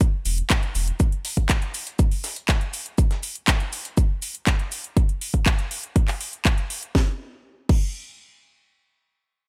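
Set in a digital ambience with a small-room, tape-warm punch, this driving, expansive progressive house excerpt at 121 BPM in straight 4/4 opens on a drop led by an up-front electronic kick and a layered house kit of cracking snare, metallic hi-hats, handclaps and crash, while a gritty, compressed breakbeat sampler-style kit of shaker, hi-hat and medium-tuned snare sits in the background with high-pass filtering and sidechain pumping until 4.8 seconds, and a deep, thick saturated sub bass on E1 pumps briefly from 0.3 to 0.9 seconds.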